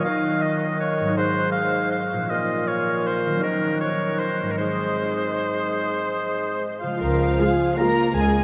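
A classical orchestral ballroom waltz in 3/4 and Db major, sweeping and elegant, moving with a rubato feel between 141 and 173 BPM through a vast, echoing reverb. A clear, close oboe and a mellow, hollow flute ensemble carry the opening lines over ringing harp arpeggios and a roomy bassoon, passing through Ebm, Ab7 and Bbm. At 6.8 s veiled, con sordino violin sections take the melody and a second line with vibrato, joined by a vintage French horn section, muted cellos and double basses, and briefly a very quiet viola section and a dark trombone section as the harmony settles on Db at 7.0 s.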